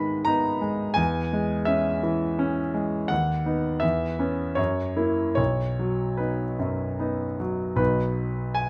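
A clear concert grand piano carries this short romantic character piece alone, its smooth, vintage tone sitting up front with a deep bass that reaches down to B1 and a treble that climbs to B5. The mood is warm and passionate, and the music moves in triple metre with a freely breathing rubato. The harmony opens on G#m, passes through C#m/E and B/D#, then gathers toward F#7 at 4.6 seconds before settling on B at 5.4 seconds. Light reverb and close, detailed microphones let every note ring with clarity. The fragment, cut from a longer work, covers a single section and lasts just under nine seconds.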